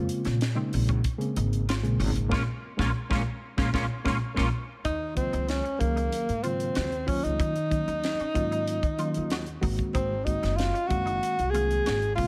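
A straight 4/4 groove at 94 BPM drives this nocturnal electric jazz fusion excerpt: a crisp kit with a high-tuned snare and punchy kick sits over a thumpy, woody pizzicato upright bass on gut strings. A reedy, slightly out-of-tune electric piano with fast tremolo plays around Bbm9, and a twangy clean electric guitar adds picked stabs through ensemble chorus. The band hits an accent from 2.3 s and the electric piano plays a fill at 3.9 s; then at 4.9 s the music moves into Eb dorian as a breathy, up-front tenor saxophone takes the lead with vibrato, subtone and scooped notes over Ebm7 and Ab9, all in a light small-room reverb.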